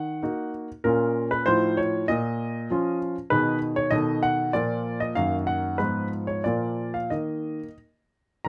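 This classical-period piano sonatina fragment, cut from a longer piece, lasts 8.5 seconds and carries a graceful, playful mood. A clear grand piano plays alone throughout, moving in 2/4 with a rubato feel that lets the phrasing breathe. The harmony moves through minor chords and dominant colours, passing a diminished chord near 5.8 seconds before settling on a bare open sonority at 7.1 seconds. The close, detailed miking places the instrument up front with an intimate, polished presence, and the noise of its action is audible beneath the notes. A light reverb adds a touch of space around the piano.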